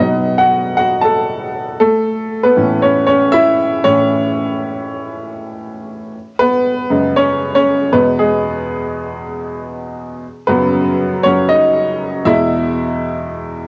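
Set in a straight 4/4 at 118 BPM, this short pop piece, cut from a longer work, carries a bittersweet, dramatic mood. A solo upright piano plays throughout, from 0.0 to 13.7 seconds, ranging from E2 up to A5, its tone clear, woody and smooth with a vintage character, placed up front in the mix. The harmony opens on B and A before shifting at 6.1 seconds into a second section built on F#sus2, E and Bsus2/F#, returning to E near the close. Light reverb surrounds the instrument, which was recorded at home on cassette. The tuning sits slightly sharp, with A4 at 443 Hz.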